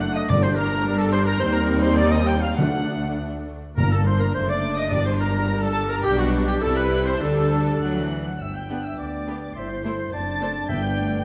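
In a rubato 2/4 at 99-109 BPM, this urgent, restless classical-period orchestral movement, cut from a longer piece, sets a rich violin section's melody over airy, very quiet flutes, a clear clarinet, a mellow oboe and a lush, hushed second violin section on inner lines, with background violas, soft-attack French horns holding sustained chords, and focused cellos and double basses on the bass, while hard-mallet timpani strike from 0.3 to 5.7 seconds and return at 10.7 seconds, as the music turns from G minor to G major at 6.0 seconds within a moderate scoring-stage reverb and a dark, warm production.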